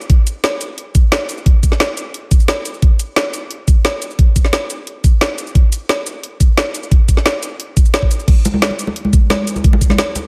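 Drum and bass at 176 BPM in a straight 4/4, this warm, uplifting cut from a longer piece is built entirely from percussion. An overdriven, knocking electronic kick sits up front alongside a layered, produced drum kit of woody snare, bright hi-hats, shaker and crash cymbal, also overdriven, all set in light reverb and digital ambience. Ringing, close and dry congas join at 8.3 seconds for the final stretch.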